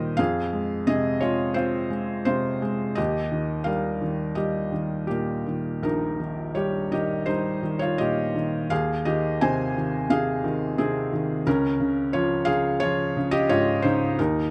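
A felt-muted upright piano opens this short passage from a longer classical piece, playing lyrical solo lines at around 86 BPM in 4/4 with a loose, rubato feel and uneven beats. Its soft, mellow tone sits up front in a dry, intimate space, where the close, detailed microphones catch the audible action noise beneath the thin felt. Moving through Fm, Eb, Ab/Eb and Db across a range from Bb1 to Ab5, the playing carries a warm, hopeful mood.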